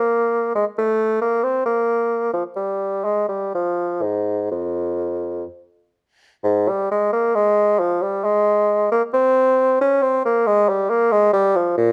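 A solo bassoon, warm and up front with a light vibrato, opens this short excerpt of a baroque-style fantasia in F minor, moving at a rubato pace of roughly 60-69 BPM in 3/4. Its flowing, introspective line spans from F2 to Db4, and the opening phrase returns at 6.4 seconds before the cut at 11.9 seconds. A moderate stone-room reverb surrounds the unaccompanied instrument.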